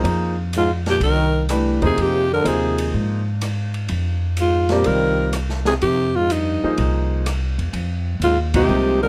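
A clear, intimate grand piano with audible action noise, a woody, thumpy pizzicato upright bass and a dark, smooth jazz kit in a small room open this brief cut from a longer modal jazz piece, swinging at 125 BPM in F dorian over an Fm9 chord with a spiritual, hypnotic mood. At 0.6 seconds a raspy, growling alto saxophone takes the melody up front, with vibrato, while a mellow trombone with light vibrato carries a lower second line. The band hits an accent at 8.5 seconds just before the drums stop, all set in light reverb.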